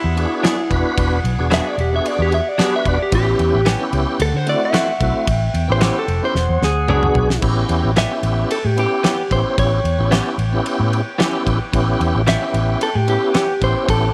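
A studio sound with light reverb and ambience frames this laid-back, swaggering soul blues excerpt at 112 BPM in A mixolydian, where a round, foam-muted electric bass sits up front, a clean lead guitar with spring reverb solos through the first 7.4 seconds over chords moving from E9 through A9 and D9, a second bright, scooped guitar adds stabs, a lightly overdriven tonewheel organ turns on a slow rotary speaker, a mellow horn section holds sustained chords in the background, and a damped 70s kit with a fat snare and dark cymbals plays a fill from 6.3 seconds into the second section.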